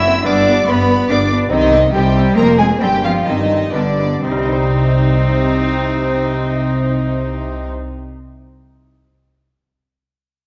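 A rich, close solo cello and a focused, vibrato-laden violin section open this driving, dramatic baroque-style concerto excerpt in triple time, joined by a soft sul tasto second violin line, a delicate fingerpicked lute, a dark double bass section, a lush cello section with portamento, and a distant, smooth viola section, all slowing from 0.9 to 4.2 seconds within a reverberant concert hall and colored by worn, warbling tape pitch drift.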